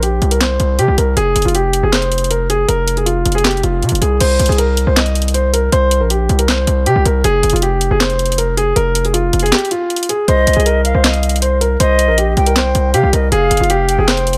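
A distorted, saturated 808-style bass with a noisy, aggressive edge drives this dark, menacing half-time trap excerpt at 158 BPM beneath a mellow baby grand piano melody with long sustain and a trap kit of sharp snare, bright hats, handclaps and crash, the kick dropping out from 9.5 to 10.3 seconds before an airy, hollow concert flute with vibrato and digital delay enters at 10.3 seconds over Cm and Fmadd9 in a small room.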